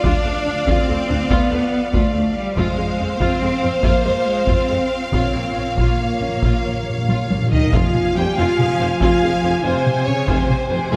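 Epic and dramatic, this cinematic orchestral film-score excerpt moves at 94 BPM in 12/8 over Dm, Fm and Bbm chords, with a lush violin section carrying the expressive melody over a second violin line in the background, a smooth viola accompaniment, sustained French horn chords, and clear, focused cello and distant double bass holding the bass, all driven by a close taiko ensemble struck with hard sticks; articulate hard-mallet timpani enter at 2.6 seconds and fill from 5.1 seconds, while a very quiet mellow trombone section joins at 7.5 seconds and a soft tuba follows at 7.7 seconds, the whole bathed in a wet scoring-stage reverb.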